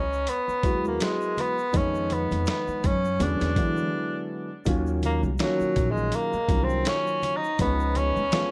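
Jazz-hop with a smoky, cool swing, this short cut opens with a clear, roomy tenor saxophone carrying the melody through tape echo over woody pizzicato upright bass, a gritty, pitched-down boom bap kit with a thumpy kick, bright shaker and congas tucked in the background, and a dark, mellow baby grand piano entering at 0.6 seconds, before a break at 3.9 seconds gives way to a saxophone solo from 4.7 seconds over Ebm9 and Db9 chords in light small-room reverb.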